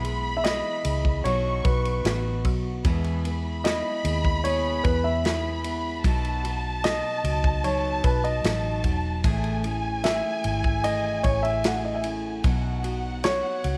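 In a straight, unhurried 4/4 groove, a natural-sounding country drum kit with a punchy kick, medium-tuned snare and ride cymbal sits beside a round, foam-muted vintage electric bass played up front, carrying this emotional, heartfelt pop ballad fragment. A dark, intimate baby grand piano takes the melody from 0.4 seconds, its long sustain and audible action noise set over a clean tine electric piano and bright, full-bodied picked steel-string acoustic guitar arpeggios. Above them a lush symphonic violin section adds a focused, vibrato-rich second line touched with tape echo, while light reverb lends the whole a soft sense of space.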